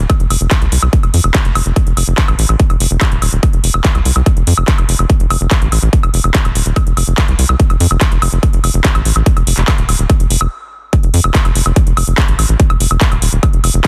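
Psychedelic and hypnotic, this short cut of psychedelic trance runs at 144 BPM in a straight 4/4, with a tight, saturated sawtooth-and-square sequencer bass plucking dark and up front beside a punchy layered electronic kick, while a big-room dance kit adds handclaps, metallic hats and woodblock, all in a dry, dense, heavily limited mix with faint mains hum, until a brief stop at 10.5 seconds gives way to a drop at 10.9 seconds.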